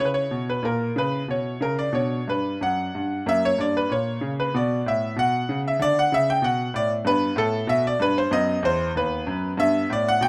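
A bright concert grand piano plays alone in this baroque-style suite movement, set in B minor at 94 BPM in 4/4 with a flowing, rubato feel and a grave mood. Its brilliant, worn tone sits up front with deep bass, moving through harmonies such as B minor, F#, G69 and a closing Gmaj13 near 9.6 seconds. Close, detailed miking and light reverb keep the piano present across this brief 10.3-second cut from a longer piece.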